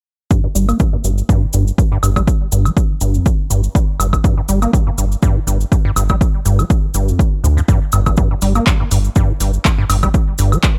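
From 0.3 seconds, a rubbery, resonant acid bass riff with overdrive, cassette tape grit and analog delay starts together with an up-front, overdriven electronic kick and a grainy, close cabasa; a round, sidechain-pumped analog bass blending sawtooth and sine with ring modulation joins at 0.6 seconds, and a punchy analog drum machine with overdrive adds handclaps, hi-hat and woodblock at 0.7 seconds, giving this trippy, raw acid house piece, cut from a longer track, a 122 BPM groove in G minor with swung 16ths and a dry, gritty hardware sound.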